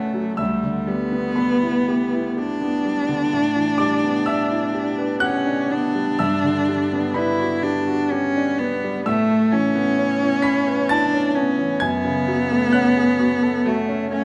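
A single bowed cello carries the melody in this luminous, dreamy impressionist classical duo, its rich, focused tone sung with vibrato up front in the mix, moving between G3 and E4. A grand piano accompanies throughout, its clear, natural sound also placed up front and ranging from D2 all the way to B6. The music drifts in 3/4 at a slow 60-66 BPM with a rubato feel, and the harmony glides through colorful chords such as Em7/D, A9sus4 and Gmaj7 before settling into A major at 9.1 s on Aadd9, then turning to F#madd9. A moderate scoring-stage reverb gives both instruments a spacious halo, and the tuning sits slightly high at A4 = 441 Hz. This brief passage is cut from a longer piece.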